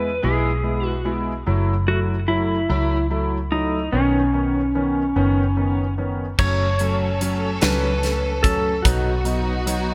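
A bright 1980s-style digital production with light reverb and studio ambience frames this dramatic, melancholic six-eight pop ballad at 49 BPM in 6/8, cut from a longer piece and moving through E, F#m7 and Badd9 before shifting to F#m and B. A dark, compressed lap steel guitar carries the slide melody with volume swells and delay, over a concert grand piano with deep bass, long sustain and analog chorus, and a round, foam-muted fingered electric bass. At 6.4 seconds a lush, bowed string section adds smooth sustained chords while a huge arena drum kit enters with a punchy kick, bright cymbals and gated reverb.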